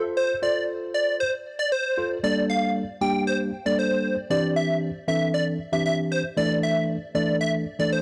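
A punchy, catchy plucky unison lead, brilliant and up front with a detuned square-wave edge and a noise layer, carries the melody from 0.2 s in this bittersweet, energetic pop excerpt at 116 BPM in G dorian. Beneath it, a worn, slightly out-of-tune tine electric piano plays the accompaniment through chords moving from F to Gmadd9, Cadd9 and Dsus2. The dry, gritty recording has the texture of cassette tape, touched by light reverb and digital ambience.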